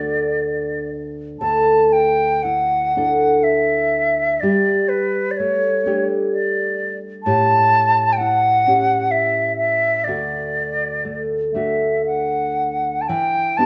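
A wooden flute and a nylon-string guitar begin together at 0.0 s in this wistful, pastoral Celtic slow air, moving in a free, rubato three-beat lilt. The flute carries the melody with an airy, woody tone, gentle vibrato and a soft attack, sounding slightly distant even as it sits up front. Beneath it, the classical guitar gives thumb-plucked accompaniment with a warm, acoustic body. The harmony drifts from D through open suspended chords to an A7 before settling back on D, then turns toward Em7 at 13.1 s, where the fragment breaks off as part of a longer piece. A moderate recital-hall reverb surrounds both instruments with a soft, spacious glow.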